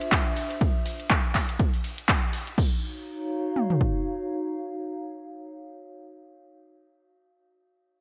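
Lightly reverberant and cut from a longer piece, this moody, late-night deep house passage at 122 BPM with a swung 16th feel opens on a drop. An overdriven electronic kit sits up front, with a punchy kick and toms alongside crash, handclaps, hi-hat and ride, above a warbling, nostalgic lo-fi pad of detuned square and triangle tones that carries chorus, sidechain pumping, a dark slow attack and a long release. A very quiet acoustic kit from a small room adds a brief ride and medium-tuned snare, and the cymbals and claps stop at 2.7 seconds as the harmony moves from Dm9 to Ebm9. The kick and toms fall away at 3.9 seconds, leaving the pad alone until 6.3 seconds.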